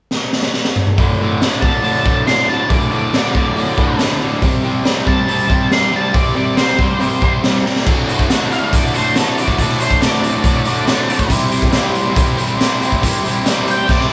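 A straight 4/4 garage rock stomp at 139 BPM in D mixolydian, this swaggering, rowdy clip opens with a drum fill on a raw, saturated kit, its high-tuned snare and punchy kick sitting up front with a gritty, rolled-off top, before a bright, crunchy double-tracked rhythm guitar enters at 1.0 seconds, picking a riff between D5 and C5 power chords. At 1.6 seconds a dark octave-fuzz lead guitar joins with a distorted melody high above, and at 7.9 seconds the band shifts into a second section over full D and C chords. Light reverb gives the sense of a band playing live together in one room, cut from a longer piece.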